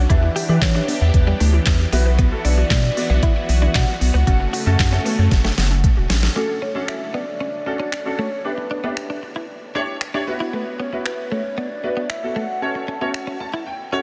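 Driving and confident, this dance-pop excerpt moves at 115 BPM in E dorian, with a soft, octave-layered synth lead carrying the melody through chorus, phaser and analog delay over a clear baby grand piano, a clean, direct-recorded electric guitar riff sitting in the background, and a smooth R&B drum kit of knocking kick, deep snare, hi-hat, finger snaps and handclaps up front. For the first 6.3 seconds a round, deep analog bass and an airy, detuned supersaw swell share a sidechain pumping, while a hollow, bouncy square pluck adds very quiet arpeggios, before a drum fill leads into a second section where the piano takes a fill at 13.1 seconds. The whole mix is dreamy and soaked in a huge ambient reverb, cycling through chords like Em7, Bsus4, F#m and Dmaj7.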